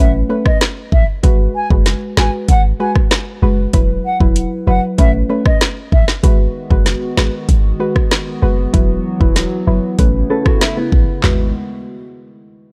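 A deep, boomy 808-style bass anchors this tough, bouncy dancehall excerpt at 96 BPM in G# phrygian, its clean, sine-like tone hitting with a fast attack and decaying into darkness beneath an up-front electronic afro-pop kit of deep kick, woody snare, metallic hats, handclaps, rim clicks and toms. An airy wooden flute carries the opening melody until 6.0 seconds, its distant, vibrato-tinged voice trailed by digital delay. Beneath it, a soft, round pluck with a noise layer and filter sweep supplies gentle, chorused accompaniment throughout. From 6.2 seconds a hollow, flute-like pad enters with slow-attack sustained chords, mellow and pumping under sidechain compression. Near the close, at 10.3 seconds, a dark, fingerpicked nylon-string guitar adds a brief run of classical arpeggios over a cycle of Aadd9, G#m7 and Esus2, all in a dry mix.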